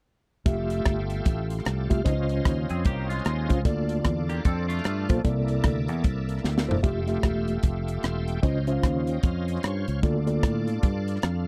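A mellow tine electric piano, a bright tonewheel organ with slow rotary speaker, light overdrive and chorus vibrato, a punchy fingered electric bass and a crisp fusion drum kit with a high-tuned snare and tight kick open this jubilant, soulful, swung uptempo gospel excerpt together, with a twangy, phased electric guitar adding a second line from 2.7 to 5.2 seconds, a drum fill at 6.4 seconds and a shouting organ fill at 8.8 seconds, the whole captured as a dry, close 1970s-style studio recording with small room ambience.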